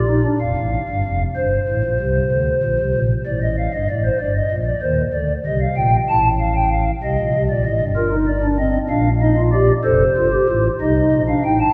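A pipe organ on a stopped flute registration carries this short classical passage alone, its soft, hollow flute tone sitting up front with a tremulant and a mellow, romantic voicing. The music is a baroque-style fugue in three parts, moving at 64 beats per minute in a straight 12/8 with a serious, solemn mood. The organ spans a range from F1 to A5 and sounds for the full 11.7 seconds. The harmony moves from F through Bb, Ebmaj7/G, Adim and Eb/G before arriving on F7 at 9.8 seconds. A wet church reverb with a 2.8-second decay surrounds the instrument, and the passage is cut from a longer piece, tuned to A4 = 439 Hz.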